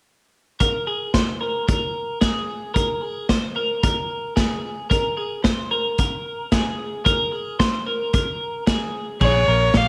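A bright, twangy twelve-string electric guitar opens the piece at 0.6 s, ringing out clean, compressed arpeggios through analog chorus and tape echo. A punchy vintage drum kit with dark cymbals and a pumping room sound enters alongside it at the same moment, driving a restless, bittersweet jangly indie pop groove at 112 BPM over an Abadd9 chord. At 9.2 s the harmony moves to Bbm7 as a round, foam-muted fingered electric bass and a single smooth, bowed violin melody with vibrato come in, all set in a moderate echo chamber reverb.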